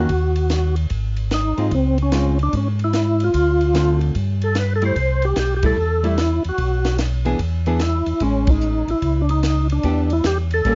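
A fat, lightly overdriven tonewheel organ carries the melody in this swinging, soulful soul jazz organ trio, its percussive attack, key click, chorus vibrato and slow rotary speaker sitting up front. A second, mellow tonewheel organ plays the bass line with a round, clean tone, vibrato and its own slow rotary speaker. Between them, a miked hollow-body archtop guitar adds picked, clean accompaniment. A compact acoustic cocktail kit provides the drums, with a high-tuned snare, punchy kick, hi-hat and dark ride cymbal. At 148 BPM in 4/4 with a swung eighth-note feel, the harmony moves from D#m and G# through C#maj7, Dm7, G69 and C6 to Bm, E7, Amaj7 and Em7, with band accents at 5.6 and 8.4 seconds. The dry, dusky production keeps the sound close and intimate in this short cut from a longer piece.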